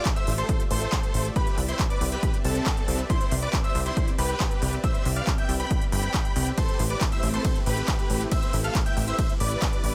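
Set in a digital ambience, this cut from a longer uplifting trance piece feels soaring and euphoric, with a straight pulse in 4/4. A huge, detuned supersaw lead carries the melody with a bright, compressed edge, sidechain pumping and dub echo. Above it, a catchy, full-bodied plucky unison lead plays a second line in the background, colored by ensemble chorus and sharing the same pumping and echo. A lush supersaw pad holds sustained chords behind them with a slow attack and long release, moving from Fmaj7/A to Cmaj7 at 1.4 seconds and to Am7 at 6.6 seconds. A punchy electronic kick sits up front, while a layered dance kit adds handclaps, crisp hi-hats and ride cymbal, its hats and cymbals pumping. Underneath, a funky, evolving analog bass with a filter pluck enters at 0.3 seconds and drives the low end.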